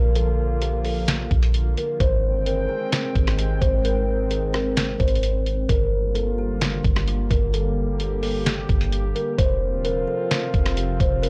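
Atmospheric cloud-rap hip hop at 130 BPM in a half-time 4/4 feel, this blissful, floating fragment is cut from a longer piece and moves through Bb, Abmaj7, Gm7 and F. A woody, hollow-boxed kalimba carries the melody between F4 and C5 with soft fingertip plucks that ring through a tape echo. Beneath it, a warbling, nostalgic pad built from detuned sawtooth and triangle tones holds sustained chords with a slow attack and long release, colored by chorus and its own reverb and pumping against a sidechain. A deep, round, sine-like 808-style bass sits up front with a fast attack and dark decay. At 0.2 s a pitched-down, muffled trip hop sampler-style kit enters with a thumpy kick, medium-tuned snare, rim click and hi-hat, compressed and placed up front, all captured on a dry, gritty hardware rig with cassette-tape character.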